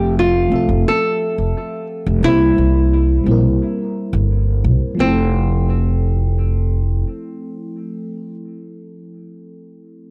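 Sunset chillout at 87 BPM in F major, smooth and blissful, this short excerpt moves from Fmaj7 to C7 and back to Fmaj7 in a dry, gritty small room. A small, fingerpicked nylon-string guitar carries the melody with analog delay until 8.3 seconds, while a woody, thumpy pizzicato upright bass on gut strings sits up front with tube saturation until 7.0 seconds. A mellow, round FM electric piano, soft and full-bodied with a noise layer, fast attack and decaying tone, plays the accompaniment through chorus, phaser, cassette tape and analog delay, and rings on alone to 10.1 seconds.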